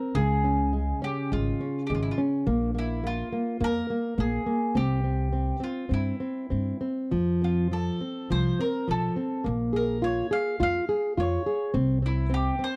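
A dry, close recording with small-room ambience and a 1970s studio character frames this fragment of a mournful, longing fado-style ballad, moving at 104 BPM in 4/4 with a rubato feel. A mellow bowl-back mandolin, picked on double strings, carries the melody, while a thumb-plucked classical nylon-string guitar sits up front with its warm accompaniment. A gut-strung upright bass, played pizzicato with a woody, thumpy tone, also sits up front and supports the harmony from 0.1 to 12.5 seconds.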